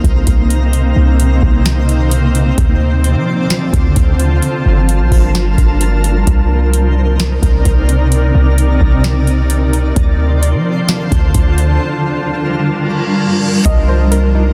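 A deep, boomy 808-style bass sits up front in this melancholic, ethereal cloud-rap excerpt, moving in a half-time feel beneath a booming analog drum machine with a tonal snare and metallic hats. A blurred, detuned granular pad with its own reverb and sidechain pumping holds dark sustained chords, while a faint, sparkling granular texture with octave-up shimmer hovers above. A break arrives at 11.8 seconds, a reverse cymbal comes in at 12.9 seconds, and a soft, round pluck with chorus and tape echo enters with arpeggios at 13.7 seconds, all within a dense, heavily limited modern master.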